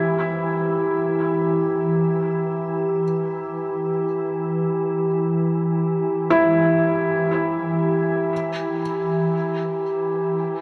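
The recording sits in a huge, wet ambient reverb whose tail lingers for about 9.1 seconds, giving this 10.6-second fragment of a longer piece a serene, melancholic air. It is an ambient passage in free time, resting on an E minor chord throughout. Up front, a felt-muted upright piano plays soft, intimate arpeggios around E4, its mellow, thin felt tone carried by diffuse delay and shimmer reverb. Beneath it, an organ-like drone holds E3 with a calm, nasal quality, blending sine and triangle colours in unison, thickened by ensemble chorus and its own reverb, with a slow attack and long release. A glass harmonica adds a glassy, ethereal texture near G4, smooth and pure, its notes swelling slowly through its own shimmer reverb.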